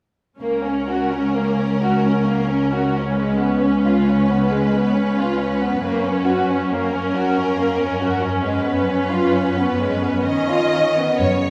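Serene and lyrical, this rubato romantic movement for string orchestra in 3/4 is a short fragment of a longer piece. From 0.4 s a rich, vibrato-laden violin melody sings over a focused second violin line, an intense viola accompaniment and expressive cellos carrying the bass, with smooth, even double basses joining only at 11.2 s. A wet scoring-stage reverb sets the ensemble further back in the room, while the second violins and cellos sit up front.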